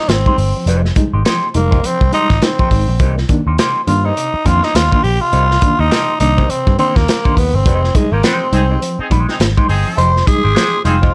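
A swung sixteenth-note groove at 103 BPM in 4/4 drives this sly, funky excerpt in F dorian, set by a crunchy breakbeat kit whose tight kick, medium-tuned snare and hi-hat sit dark and up front with a rolled-off top. A vintage muted electric bass, picked and foam-muted, adds a round, amped low end. Over this, a growling tenor saxophone takes the solo throughout, raspy and gritty with a light vibrato, its plate reverb adding depth. A reedy, worn electric piano with fast tremolo punctuates with stabs, while a clean, fingered semi-hollow guitar adds accompaniment through wah and harmonic tremolo. The harmony moves from Fm9 to Cm7 and back, and at 8.5 seconds a vintage-toned horn section enters with a second line.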